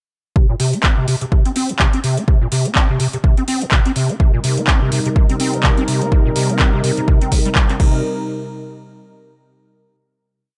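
A squelchy, resonant square-wave acid bass carries this short, hypnotic acid house piece, running a 16-step line with accents and slides from 0.4 s, its tone roughened by overdrive, ensemble chorus, tape echo and cassette coloring while it pumps against the beat. Alongside it a punchy electronic kick drives a steady four-on-the-floor pulse in a swung 4/4 groove. A booming analog drum machine adds handclaps on the backbeat, metallic closed and open hi-hats and a crash, with a tape-warm character that sounds re-recorded in a small room. At 4.2 s a detuned sawtooth pad enters on a sustained Cm7 chord, smooth and bright with chorus and its own sidechain pumping. The whole groove sits on that single chord until 8.0 s, when a final hit closes the piece in a dry, gritty hardware sound.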